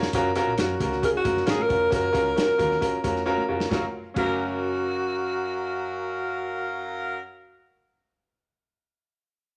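A breathy alto saxophone carries the melody up front from 0.6 seconds, its subtone voice touched with light vibrato in this uplifting, warm 1960s-style soul cut in F# major at 134 BPM, over a clear grand piano and a round, foam-muted electric bass sitting in the background. A small-room drum kit with dark cymbals and a tight kick, joined by high-tuned, close congas, drives the groove until a drum fill at 3.3 seconds, after which both drop out at 4.3 seconds. A tight, roomy horn section enters at 3.7 seconds with a second line, all under light reverb.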